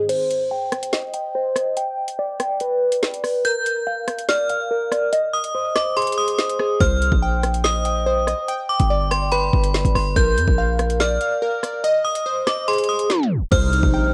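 A half-time drill groove in 4/4 drives this dark, menacing hip hop excerpt, with an electronic kit of knocking kick, woody snare, rim clicks, metallic hi-hats and crash cymbal sitting up front under a cassette tape coloring. Glassy digital keys play arpeggios throughout, their evolving, full-bodied sine plucks softened by chorus, a low-pass filter and tape echo, with a filter sweep across the opening break. A metallic FM bell joins at 3.5 seconds as a second line, its inharmonic, ringing tone bright and long-tailed with chorus and tape echo. At 6.8 seconds a punchy, heavy 808-style bass arrives, hard-hitting with a noise layer, a fast attack and a decaying tail, as the harmony cycles through C minor, G, B-flat and A-flat. A hollow, flute-like pad appears only in brief moments at the very start and close, holding mellow chords. Near the end the kick drops out and a tape stop hits at 13.1 seconds, all within a lo-fi home cassette sound and light reverb.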